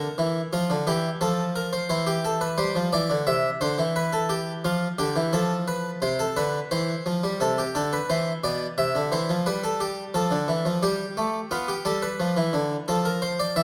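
A straight 4/4 pulse at 88 BPM drives this stately yet lively baroque-style two-part invention, a short passage cut from a longer piece for solo harpsichord spanning B2 to E5. The Flemish-style instrument sits up front, close-miked with a plucked, brilliant, full tone and the shimmer of octave strings, its dry attack framed by the bloom of a recital hall reverb. The opening moves between F and C harmonies, and after 7.4 seconds the second section turns toward Am/C, Dm and Bdim before settling on Dm/F.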